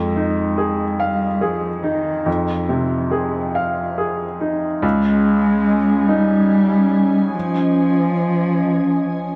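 In a rubato 6/8 sway, this reflective, melancholic neoclassical fragment, cut from a longer piece, sets a bright, woody upright piano accompaniment beside a veiled, muted cello second line with light vibrato, both up front, while a glassy, ethereal FM pad with ensemble chorus enters at 5.1 s on sustained chords as the harmony moves from Fm7 to Dbadd9, all bathed in a wet echo-chamber reverb.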